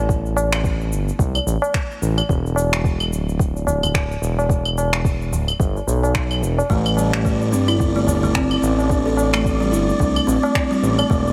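Organic downtempo excerpt in A minor at 109 BPM with a swung sixteenth feel and a warm, mystical mood, where a smooth, gliding synth bass sits up front over a soft, overdriven electronic kick, gritty electronic cabasa, finger snaps and claves, and a high-tuned, ringing tabla heard close and dry, until a buzzing, woody kalimba with tape echo arrives at 6.7 s just as the harmony settles from E7(no3) onto Am7, followed at 7.1 s by a dark, breathy, wind-like noise texture, all pressed into a heavily compressed, radio-like sound with light reverb.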